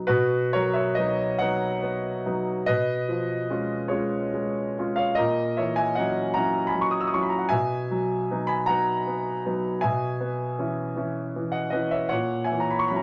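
Romantic classical nocturne for solo piano, dreamy and tender in mood, moving at a slow, unhurried pace in a lilting compound metre shaped by flexible rubato. A grand piano carries the whole 13-second passage alone, its tone present and polished, placed up front in a light reverb. The harmony drifts gently between the home chord and a pair of seventh chords, returning at 7.5 seconds to begin the cycle again with a minor-seventh colour in place of the earlier dominant one. The writing spans a broad register, from A#2 in the bass up to E6 in the treble. Cut from a longer piece, this fragment offers an intimate, songlike phrase.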